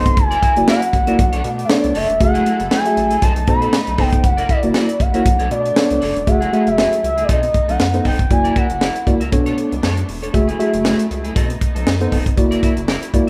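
A rough home-demo mix with small-room ambience carries this funky, danceable early-eighties boogie funk excerpt in F# minor at 118 BPM, where a dry, up-front funk kit with a high-tuned snare and a rubbery, nasal square bass drive beneath a mellow tine electric piano, a twangy, slightly broken-up guitar riff with lush chorus, and clear symphonic strings sustaining chords in the background, while a smooth, dark sawtooth synth lead with vibrato sings the melody until 9.1 seconds over a cycling F#7b13, Bm9, F#m9 and B7b9 progression.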